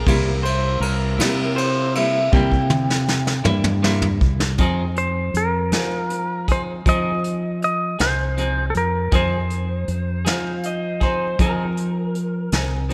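A slow 12/8 blues pulse at 53 BPM in F minor sets a mournful, brooding mood in this short excerpt, carried by a vintage brush drum kit with dark cymbals, a punchy kick and a rolled-off top, sitting up front with a round, fingered electric bass. A clean electric guitar with tremolo plays the accompaniment and takes a solo for the first 4.6 seconds over a C7 chord, while a drum fill runs underneath from 2.3 seconds. A mellow, distant saxophone section holds very quiet, tight sustained chords with light vibrato during that opening stretch. When the harmony moves to Fm7 at 4.6 seconds, a twangy, scooped lap steel guitar with slide enters on the melody at 5.0 seconds, compressed and close. Throughout, a second guitar through a small old amp adds a slightly broken-up, lo-fi line, all framed by light reverb.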